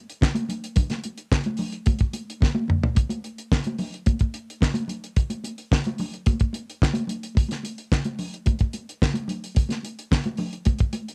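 Celebratory and glamorous, this short disco excerpt rides a straight 4/4 groove built entirely from percussion. A damped 70s drum kit sits up front, dry and acoustic, with a fat snare, a tight kick, hi-hat, toms and handclaps carrying the beat from the first moment. Congas join just after, sitting lower in the mix with a bright, high-tuned, thin-skinned tone and soft hands that give them a vintage, band-limited character. A drum fill from 2.4 to 3.0 seconds marks the shift into a new section that carries on to the end of this cut from a longer piece. The sound is close and nearly reverb-free, with the intimate feel of a home recording on cassette.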